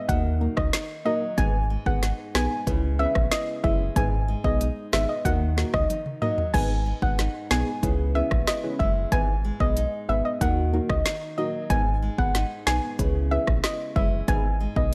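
Set in digital ambience, this tough, bouncy dancehall excerpt in G# minor moves at 93 BPM over a repeating D#m, G#m and C#m7 progression. An up-front electronic afro-pop drum kit with a deep kick, woody snare, crisp hats, rim clicks, toms and crash drives the groove, with a fill at 5.9 seconds, over a dark analog bass that blends sawtooth and sine tones. A soft, chorused pluck carries the melody, a detuned chord stab with phaser and sidechain pumping fills the middle, and a bright, fingerpicked nylon-string guitar adds arpeggios.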